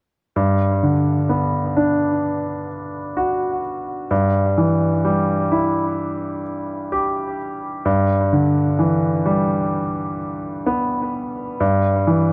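A moderate spring reverb and an echo-heavy mix surround a clear, up-front concert grand piano, its deep bass and short sustain carried through an analog delay. This slow pop piece moves at 64 BPM in a straight 4/4, with the solo piano playing between G2 and G4 from 0.4 to 12.3 seconds over Gmaj7, Em/G and Em7/G chords. The mood is hopeful and emotional, and the passage is cut from a longer piece.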